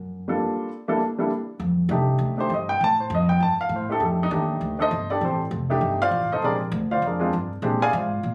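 A dark, mellow, intimate baby grand piano with a natural tone, audible action noise, short sustain and plate reverb takes a solo from 1.6 seconds over F13 and Bb13 chords in this warm, playful, swinging jazz piano trio at 199 BPM in F mixolydian, after a thumpy, woody pizzicato upright bass on steel strings opens with its own short solo, both parts sitting up front in a sound captured on a phone in a club room, taken from a longer piece.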